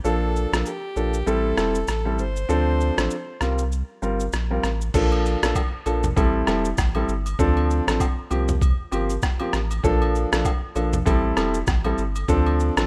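A rough home-demo mix with studio reverb frames this mellow, smooth afrobeats passage, cut from a longer piece and carrying a lightly swung sixteenth-note feel in four. A gritty, compressed trip hop sampler-style drum kit sits up front, its pitched-down sound built on a thumpy kick with rim clicks, shaker, toms and crash cymbal. Beside it, a round, sine-like sub bass with a fast attack holds deep, sustained notes, while a concert grand piano with a rich low register plays the accompaniment through a cycle of Bbmaj7, Am7, Dm7 and C7sus4. A whispered, intimate alto saxophone, bright and close-miked with a soft attack and digital delay, offers a brief pop-style solo phrase from 0.1 to 3.4 seconds. From 5.1 seconds, agogo bells and woodblock with tube shaker and group handclaps join in the background, their acoustic small-room sound adding texture as the chord cycle repeats.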